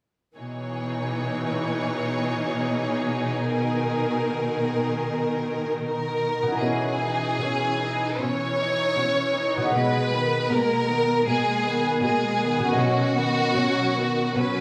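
Cinematic, emotional film score with an uplifting, hopeful mood, moving at a rubato 78 BPM in 4/4. Lush, soft-attack violas and clear cellos holding a low B2 support a rich, focused violin section with vibrato, cycling through C#madd9/B and G#madd9/B before settling on Badd9. A ringing, fingerpicked concert harp enters with arpeggios at 6.4 s, and the whole excerpt sits in a recital hall reverb of 1.6 s.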